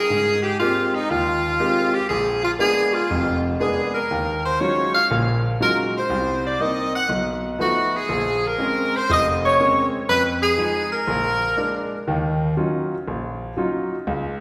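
Swung eighth notes in 4/4 drive this sultry, brassy jazz fragment, cut from a longer piece, where a bright saxophone section carries the melody up front with an ensemble vibrato until 11.9 seconds. A clear, natural grand piano accompanies from the start and plays on alone to 14.4 seconds as the harmony moves into a new section at 12.1 seconds. A wet, lingering reverb gives the sound the spacious air of a church or concert hall.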